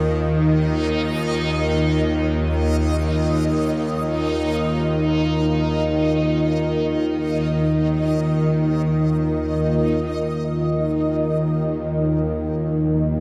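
This dark ambient drone, cut from a longer piece, unfolds in free time with a cavernous, dark mood. Up front sits a bowed-like drone, string-like and tense with a bright, sawtooth edge, a noise layer and vibrato, held low in its register. Above it, a deep ambient pad holds sustained chords, its detuned unison tone mellow and slowly evolving through chorus and a sub octave. A reversed texture adds a dreamy, granular shimmer, while a dark concert grand piano plays barely audible arpeggios with a boxy, deep-bass colour. Both the texture and the piano stop at 9.9 seconds, leaving the drone and pad to carry on until 13.2 seconds inside a cathedral reverb with a seven-second tail.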